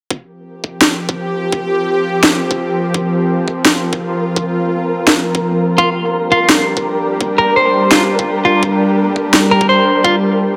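Half-time drum and bass at 169 BPM with a dark, heavy mood, built on overdriven electronic drums, with a knocking kick and a cracking snare up front in a lush hall, under a tense, nasal, sawtooth-edged bowed-like drone with sidechain pumping, a grainy, flickering granular texture tucked in the background, and a clean, compressed electric guitar that enters at 5.8 s with picked arpeggios trailing dub echo as the harmony shifts from F5 to Gm in this excerpt from a longer piece.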